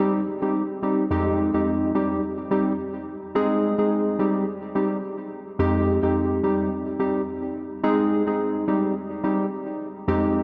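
A lightly swung sixteenth-note feel in 4/4 gives this short afrobeats passage a smooth, mellow sway, carried entirely by a solo analog keyboard that plays for the whole 10.4 seconds. The up-front keys blend square and sawtooth waves into a round, detuned tone with a fast attack, decaying notes, a filter sweep, chorus and delay, circling through Cm, Fm7 and Ab. Everything sits in a dreamy, reverb-soaked mix with a cathedral-like tail of 5.1 seconds.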